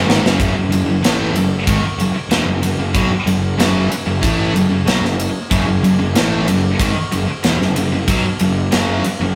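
A drum fill opens this short, aggressive hard rock cut before the band settles on an F# minor riff at a driving, straight pace, the cranked stack guitar leading with an overdriven, spring-reverbed tone while a distorted, high-gain second guitar is picked in the background. Underneath, a fuzzy, growly picked bass punches low, and an up-front metal kit with a tight kick, medium-tuned snare and bright ride cymbal keeps things hard-hitting. The rough rehearsal-room recording sits in a moderate stone room reverb that gives the take a raw, live edge.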